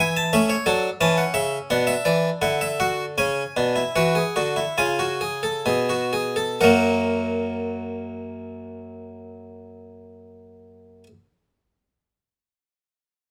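Serious and driving, this short section of a longer baroque-style three-part fugue in 4/4 moves at 60-90 BPM with a straight feel, its solo harpsichord (plucked, round, Flemish in style on a single set of strings, placed up front and ranging from F#2 to A5) slowing down over the first 6.6 seconds as the harmony passes from A through Bmadd11, C#7sus4 and a thirdless C#7 to land on F# at 6.6 seconds, all set in a moderate studio reverb.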